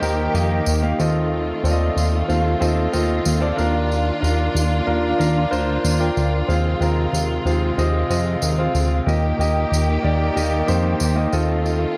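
From the opening moment of this anthemic, piano-driven pop fragment, an intimate concert grand with audible action noise and long sustain plays up front alongside a thick, detuned analog bass with a moving notch, while bowed strings with vibrato and a smooth top hold chords beneath and a jingly, close tambourine sits quietly, all in a light small-room reverb.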